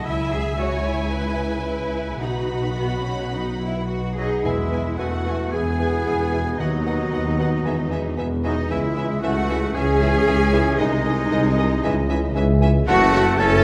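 Strings open this restless, urgent romantic orchestral passage in E major at 113 BPM with a rubato feel: lush, vibrato-rich violins carry the melody over a second violin line, a rich viola section in the background, up-front double basses and expressive cellos, while a very quiet concert harp rings out arpeggios. Between about 4.2 and 4.5 seconds the rest of the orchestra enters in quick succession, adding airy flutes, oboe and clarinet doubling the second line, a dark bassoon, mellow French horns and tight trombones holding sustained chords, trumpet stabs, a mellow tuba in the bass and a brief soft-mallet timpani stroke. Everything sits in a wet scoring-stage reverb as the harmony moves from C#m7 through E and G#/B# to close this fragment on F#m7.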